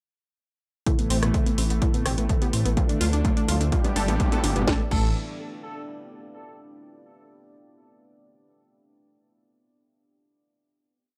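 Melodic techno at 126 BPM in A minor, cinematic and driving, this short piece builds from 0.9 s over Amadd9, Dm and G with a drum fill and a filter sweep on the lead before landing on a final Amadd9 chord at 4.7 s. A punchy, up-front four-on-the-floor kick and a techno kit with a cracking snare, metallic hats, rim clicks, toms and crash drive a rumbling, detuned saw bass with tube saturation and a galloping sixteenth-note line. Above them, a tight sequenced synth plays 16-step arpeggios with tape echo, a brassy pad pushes syncopated power-voiced chords, a thick unison lead repeats a sixteenth-note riff over a pedal note through analog delay, and a very quiet, moody ambient pad enters at 2.3 s, all in a dry, gritty mix with light reverb and sidechain pumping on the lead, arpeggios, brassy pad and bass.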